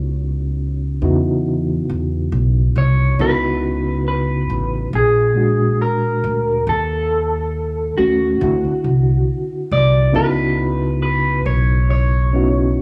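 Swung sixteenths at 69 BPM in 4/4 carry this melancholic, hazy lo-fi hip hop excerpt in C# minor, where a dark, slightly broken-up electric guitar through a small old amp picks the phaser-tinged melody over a reedy, clean electric piano with fast tremolo and cassette tape color and a woody pizzicato upright bass with tube saturation, the three parts sitting up front in a dry, gritty room as the chords move from C#m11 through A#7b13, D#m7b5 and D9 back to C#m11 at 10.1 seconds.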